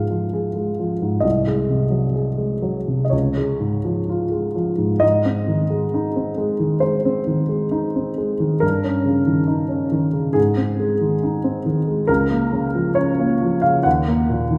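Classical romantic nocturne fragment for solo baby grand piano, nostalgic and tender in a flexible rubato, with an intimate, warm tone of short sustain and audible action noise spanning C2 to Gb5, placed up front yet bathed in a wet recital-hall reverb and heard from further back in the room, with lossy compression artefacts across its 14.6 seconds.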